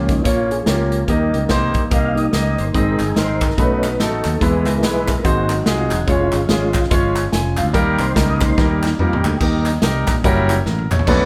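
Uptempo gospel with a reverent, uplifting mood and a swung feel, cut from a longer piece and played live in one room with a moderate studio reverb. A smooth tonewheel organ with key click, slow rotary speaker and chorus vibrato takes a solo until 9.4 seconds, sitting in the background over an intimate, up-front baby grand piano with audible action noise, a growly, bright fingered electric bass, and very quiet sustained chords from a mellow French horn section. An airy, polished acoustic drum kit with a punchy kick adds fills around 9 and 11 seconds, and a hollow group handclap enters at 3.0 seconds.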